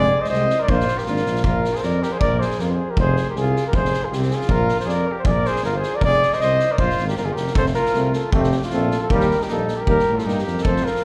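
A dark cornet with light vibrato leads up front in this festive, exuberant Balkan brass band excerpt at 157 BPM in a swung 2/4, joined by a clear flugelhorn second line over an up-front tuba bass and a distant, roomy acoustic drum kit with fat snare and tight kick, while a background trombone and a very quiet, warm euphonium add accompaniment that drops out at 1.2 seconds and returns at 7.6 seconds as the key moves from Bb to F mixolydian, all set in a moderate hall reverb.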